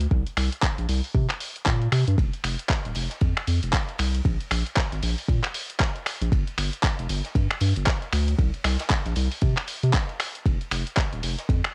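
Deep house at 116 BPM in 4/4 with a 60% swing on the sixteenths, this short cut from a longer piece feels warm and deep, tuned slightly low to A4 = 436 Hz. A round, dark analog bass with a sine-like, sustained tone pumps against an up-front electronic kick, while a gritty, compressed soul sampler-style kit adds finger snaps, handclaps and hi-hat, both kits carrying small room ambience and cassette tape grit. From 2.2 seconds a big acoustic rock kit sits in the background with filtered snare, hi-hat and bright ride cymbal, all wrapped in the hazy character of a home cassette recording with studio reverb.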